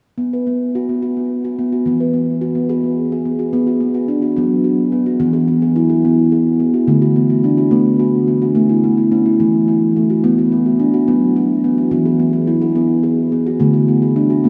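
A round, ringing steel tongue drum, struck with rubber mallets and close-miked up front, plays hypnotic arpeggios from 0.2 to 14.5 seconds in this meditative world piece in B dorian at 72 BPM in a straight 6/8, cycling through B5, E, D and A5 chords in a dreamy mix soaked in huge ambient reverb, cut from a longer piece.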